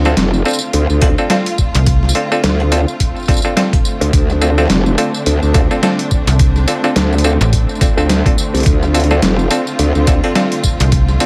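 Swung 16ths at 106 BPM in 4/4 drive this playful, swaggering glitch hop in D minor, cut from a longer piece, where a gritty, pitched-down sampler kit of hi-hat, snare and tambourine and a thumpy electronic kick entering at 1.0 s sit in a small room, a growling, wobbling formant-filtered bass with chorus and a snappy, metallic FM slap bass, popping in at 1.8 s and again from 6.3 s, push up front, and a muted, stringy clav stabs through tape echo over lush bowed strings holding a Dm7, with both clav and strings pumping under sidechain in a dry mix.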